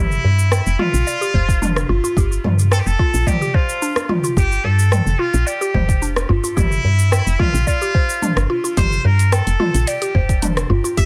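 A nasal, distant straight-muted trumpet with vibrato and tape echo sings the melody over warbling, vintage mallet-like synth pluck arpeggios with chorus, cassette-tape color and delay, and a woody, round FM bass sitting up front, as a deep house kit with dark hats, rim click, shaker and toms re-recorded in a small room joins alongside a very quiet acoustic udu, and a soft electronic kick enters at 1.3 s to ground this earthy, meditative organic downtempo excerpt at 109 BPM in G dorian, resting on a single G7 chord with its third omitted under a dense, heavily limited modern master.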